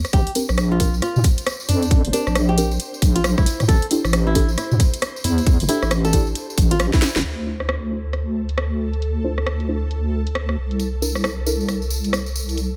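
A skippy, swung two-step groove drives this late-night UK garage excerpt, built on a tight electronic kick and an overdriven garage kit with a cracking snare and filtered hats, while a deep, wobbling chorused bass, a jingly tambourine, dark warbling chord stabs under a filter sweep, and a faint ethereal pad with tremolo and sidechain pumping surround a bright, fingerpicked flamenco guitar through tape echo, until a drum fill from 6.9 seconds and a band accent at 7.1 seconds lead into a second section where the kick and guitar have stopped.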